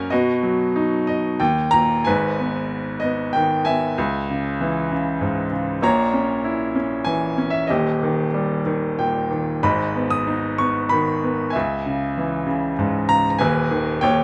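A bright grand piano plays alone from the first moment, with long sustain and audible action noise that keep it intimate and up front in light reverb, in a relaxed classical piece in triple time with a lyrical, rubato feel. An opening piano fill from 0.7 to 2.1 seconds leads into the main passage, which moves through G# minor, C# minor, a diminished chord and D# before settling onto G# minor over D# near 13.4 seconds. Cut from a longer piece, it spans a broad range from deep bass notes to high treble.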